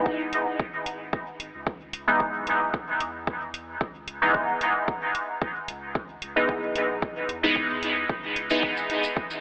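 A boxy, telephone-thin sound soaked in cavernous hall reverb frames this nocturnal dub techno excerpt in C# minor at 112 BPM, where a bright, resonant sawtooth polysynth stabs on a C#m7 chord through chorus, phaser, dub echo and sidechain pumping until 8.7 seconds, over an overdriven, layered electronic kick, metallic tape-hued hi-hats and shaker, and a soft, round sub bass that pumps far beneath.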